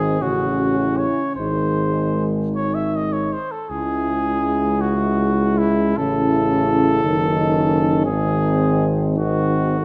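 In a slow, rubato 6/8 of 49-59 BPM, this fragment of a hymn-like classical brass band piece moves through a yearning, elegiac progression from F#m/A to G#, C#m and A, and settles on G#7 at 9.2 seconds. A warm solo cornet carries the melody up front from E4 to E5, while a tight French horn section holds a smooth second line in the background. A trombone section with light vibrato and a mellow solo trombone fill in the accompaniment, and a distant, roomy tuba anchors the bass in a recital hall with moderate reverb.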